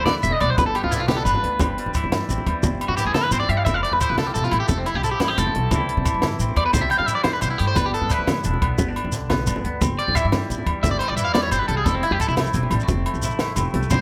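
A light reverb and studio ambience frame this joyful, danceable highlife guitar band excerpt, cut from a longer piece and moving at 117 BPM in a straight 12/8 in C major. Up front, a bright, twangy electric guitar at the edge of break-up picks arpeggios high in its range through phaser and analog delay, while a clean electric guitar solo runs from the start to 13.9 seconds. Beneath it, a semi-hollow electric guitar supplies compressed, hollow-bodied picked accompaniment with a subtle chorus, while a woody, thumpy upright bass plays pizzicato on steel strings. A compact cocktail drum kit sounds dry and natural, with dark cymbals, a high-tuned snare and a tight kick, and closes with a fill from 13.1 seconds. Low-tuned congas played with soft hands, a grainy, mellow shekere and ringing agogo bells set in the background fill out the percussion over a cycle of G6, C/G, Fmaj7 and C.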